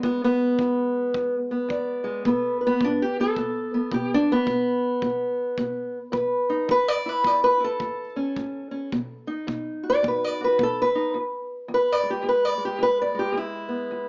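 Through a small speaker with a short, moderate room reverb, this soulful, gritty acoustic country blues excerpt swings on a dark, boxy fingerpicked parlour steel-string guitar that carries the melody up front with plate reverb from 0.0 to 14.1 seconds, over chords moving from E7 through A and B back to E, while a tight, smooth kick drum sits in the background until 10.8 seconds.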